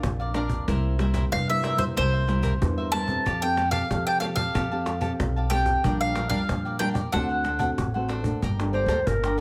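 A festive, lively samba and choro excerpt in Bb major at 93 BPM opens with a picked, up-front mandolin melody bathed in plate reverb, over dark, thumb-plucked nylon-string guitar, woody pizzicato upright bass and a soft-handed cajon with faint snares, and a crisp cavaquinho joins at 0.2 seconds. The mandolin carries the tune until 8.1 seconds as the harmony moves through Bb, C7, Fadd9, Bb6 and D7 toward Gmadd9. At 8.7 seconds a classical-style clarinet with a soft attack and smooth top comes up front with a brief second line, and the recording has light reverb and close, detailed microphones.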